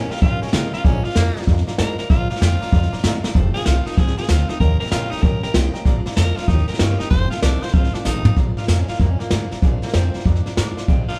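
A swung 192 BPM groove in 4/4 drives this rollicking, retro rockabilly clip in Bb mixolydian, where a raspy, growling tenor saxophone with vibrato solos over the first 8.4 seconds, backed by a boomy, brushed jazz kit sitting up front with fills at 3.2 and 8.1 seconds, a woody pizzicato upright bass, a boxy picked ladder-braced acoustic guitar with old strings, and a jangly, metallic tack piano tucked behind, all played live in one room with light reverb.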